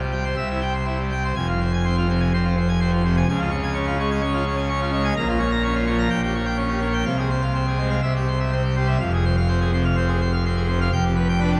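A solo pipe organ at full registration opens on a C chord and settles into F minor at 1.4 s for this majestic, dramatic baroque-voiced classical toccata at 125 BPM in 4/4, its brilliant mixtures and chiff sitting up front in a long, wet church reverb over a vinyl crackle as the harmony moves through Db, Bbm and C before the excerpt cuts off on a G7/F that arrives at 10.9 s.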